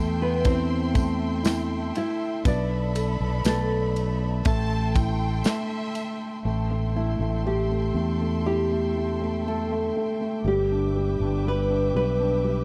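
A punchy, up-front acoustic drum kit with a mid-forward, medium-tuned snare, kick and ride cymbal drives this longing, emotional pop ballad excerpt from 0.4 to 6.2 seconds, with a jingly, bright tambourine sitting quietly in the background over the same span. The melody comes from a fingerpicked, classical nylon-string guitar carrying a slapback echo, while a fretless electric bass, direct and amped, sits prominently underneath. A soft, muted felt upright piano adds mellow, intimate accompaniment, and a studio string section holds smooth, bowed chords with vibrato high above. A lush violin section briefly adds a second line from 4.5 seconds, its rich ensemble tone focused and smooth on top. The whole recording has a dry, close 1970s studio character with little reverb, keeping every part near and personal as the harmony moves slowly from Am7 through E7sus4/B, back to Am7 and on to Em7/G.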